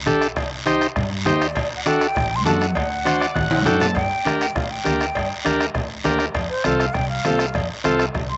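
A vintage combo organ sits up front in this driving, danceable cumbia excerpt, its clean, reedy accompaniment carrying a slapback echo and breaking into a fill at 3.1 s. A breathy concert flute joins at 1.4 s with expressive vibrato, tongued notes and lifted highs, also touched by slapback echo. At 4.0 s the flute takes over with a solo as the harmony shifts into a new section. Beneath them, a pizzicato upright bass gives a woody, thumpy pulse from its steel strings. The percussion blends a soft-beaten bombo with slapback echo, damped, low-tuned congas with thick skins in the background, a raspy guiro heard close and dry, and distant, ringing cowbell and timbales, while a drum fill arrives just before the solo. The recording was made outdoors with little reverb, and its top end is rolled off.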